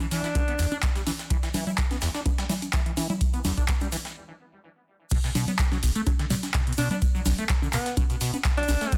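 A squelchy, resonant acid bass riff leads this driving, gritty acid house cut at 126 BPM, its sawtooth tone bright and up front, colored by phaser, overdrive, lush chorus, tape echo and sidechain pumping, while a booming analog drum machine with metallic hats, congas, handclaps and crash pounds alongside a deep, tape-warm electronic kick that arrives at 0.4 seconds. A clear alto saxophone with vibrato and tape echo sounds briefly near the start and returns at 6.8 seconds over the drop, after a break from 4.2 seconds. Underneath sit a compressed, sampler-style breakbeat kit with a high-tuned snare and a grainy tube shaker in a distant large room, all within a dense, heavily limited modern mix with light digital ambience.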